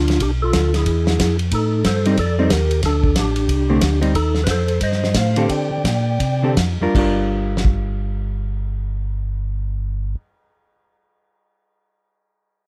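A swung 4/4 groove opens this bluesy, smoky soul jazz organ trio fragment, lifted from a longer piece, and the pace gradually slows midway through. A soft, flute-like tonewheel organ with percussive third-harmonic attack and key click carries the melody through a fast rotary speaker, while a second, round and dark tonewheel organ supplies the bass line through a slow rotary speaker. An acoustic soul drum kit with a fat snare, tight kick and dark crash, ride and hi-hat sits up front in a small room, and a clean, picked hollow-body electric guitar joins as accompaniment at 2.1 seconds. The harmony moves through half-diminished and suspended dominant chords before settling on a minor seventh chord, as the melody drops out at 6.5 seconds and the drums at 7.7 seconds, leaving guitar and organ bass to close. The sound is dry and intimate, with close, detailed microphones placing every instrument near the listener.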